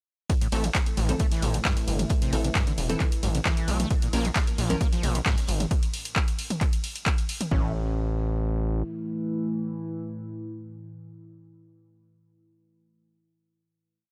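A punchy, layered electronic kick sits up front in a four-on-the-floor pattern, driving this relentless peak-time techno piece at 133 BPM in straight 4/4. Beneath it, a gritty, saturated sawtooth synth bass plays an aggressive off-beat line with oscillator sync, and a tape-tinged analog drum machine adds programmed hats, clap backbeat, ride and mid tom. Further back, a squelchy, resonant acid line screams with distortion, chorus and analog delay through 32 steps of accents and slides. A very quiet, small-room funk breakbeat with a high-tuned snare is looped and edited underneath, and a crisp, detuned wavetable stab echoes sparse chords moved in parallel while a mellow analog drone with pulse-width modulation and a moving notch swells in slowly. The drop runs from 0.3 to 7.5 seconds, opening over A minor before the harmony falls away at 3.9 seconds, while the bass, acid line, drone and stabs pump against the kick. 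After that, a final A major chord rings out from 7.5 seconds, with the drone and stabs trailing on until 12.4 seconds, all in a dry, hardware-recorded sound.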